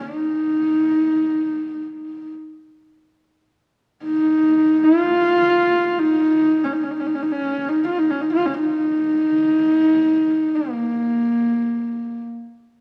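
Worn, warbling cassette tape gives this short fragment of Mongolian folk music a drifting, aged pitch, set in a moderate recital hall reverb. A lone horsehead fiddle sits close and up front, playing in free time from 0.0 to 12.2 seconds, its husky, intimate bowed tone marked by a soft attack, light vibrato and sliding portamento within a narrow low register. The mood is vast and windswept, like a solitary voice carried across open land.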